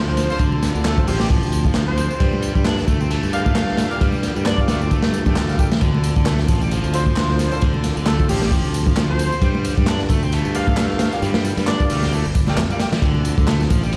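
An airy, dreamy lead with chorus and an old-record tint floats over a crunchy, overdriven guitar riff, a punchy, up-front fingered bass and a faint, piping tonewheel organ with key click, as a gritty breakbeat kit with dark cymbals and a tight kick drops in almost at once. An overdriven electronic garage kit adds handclaps, ride and tambourine underneath, while a tight horn section with vibrato stabs from the background and very quiet, hard-handed congas patter close and dry. The raw, swung breakbeat groove rocks between Dm7 and Gm7 in a big, bare-room reverb laced with vinyl crackle, and the lead drops out at 11.8 seconds.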